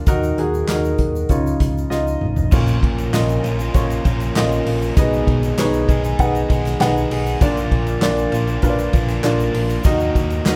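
A straight 4/4 groove at 98 BPM drives this dramatic piano-driven pop passage, cut from a longer piece played live by a band in one large studio room. An acoustic drum kit with dark cymbals, a punchy kick and a medium-tuned snare, played with bundle sticks, carries the beat across hi-hat, ride, crash, toms and handclaps, and a drum fill at 1.9 seconds leads into the next section. A natural, up-front baby grand piano plays the accompaniment through chords moving from Ebm and Dbadd9 to Bbm, Abm/Cb and Bb, while a round, digital FM bass with a fast attack sits beneath it. A very quiet, flute-like tonewheel organ holds sustained chords through a slow rotary speaker, and a grainy egg shaker stays in the background. At 2.5 seconds a bright, overdriven electric guitar enters with a picked riff, giving the passage its driving edge under a moderate reverb.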